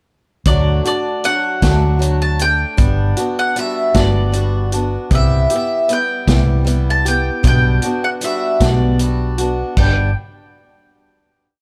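A bright mandolin with doubled strings leads this warm, nostalgic folk rock and heartland rock piece, playing hook-like phrases up front between D5 and A5. The tune moves in an unhurried 6/8 at 52 BPM in G major, passing through D, Gmaj7, Cmaj7 and Gmaj7/B before settling on a final G chord at 9.8 seconds. A boxy acoustic guitar supplies swing-style picked accompaniment in open chord shapes. Beneath it, a fingered hollow-body short-scale electric bass adds a dark, round dotted figure that sits prominently in the mix. A vintage acoustic drum kit with a punchy kick, a medium-tuned snare, hi-hat and dark crash cymbals keeps a natural 6/8 groove with a rolled-off top. The four parts begin together at 0.5 seconds, and a small room ambience lends the performance an intimate, lived-in character.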